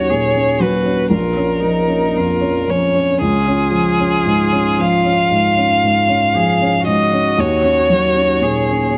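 A slow, rubato pulse around 58 BPM in 4/4 carries this melancholic, reflective fragment of neoclassical piano and strings in E-flat minor, tuned slightly sharp to A4 = 441 Hz, with harmony drifting from Ebm7 through Bbm and Db back to Ebm7. A con sordino solo violin sings the melody up front, veiled and softly attacked with vibrato, while a dark, lightly vibrating muted cello traces a quieter second line beneath it. A felt-damped upright piano plays mellow, intimate accompaniment up front, its natural action noise audible, all set in a moderate plate reverb across the full 9 seconds.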